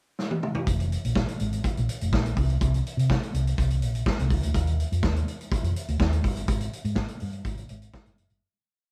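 A gritty, saturated vintage drum kit sits up front in this sultry, glamorous disco piece at 124 BPM in F dorian, opening with a fill from 0.2 seconds before settling into a four-on-the-floor beat with sixteenth-note hats, a tight kick and a medium-tuned snare under a rolled-off top. At 0.7 seconds a dark, round hollow-body electric bass joins with a punchy, syncopated line full of slides and chromatic approach notes, ranging from F1 to C3. After its pickup bar, the short piece moves into a breakdown played by a band sharing one room with moderate studio reverb, and it fades out from 6.5 seconds to its close.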